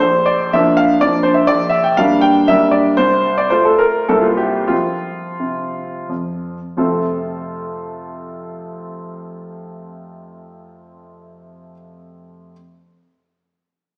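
Dotted rhythms drive this proud, graceful romantic dance in 3/4 and F major, its rubato tempo ranging from 83 to 130 BPM and slowing between 2.2 and 6.8 seconds as the harmony moves from Bb through C7 to a settled F. A single grand piano carries it alone, its tone clear and present with long sustain, sitting up front while spanning deep bass to the upper register. The fragment is bathed in wet recital hall reverb and heard from further back in the room, with a small speaker quality.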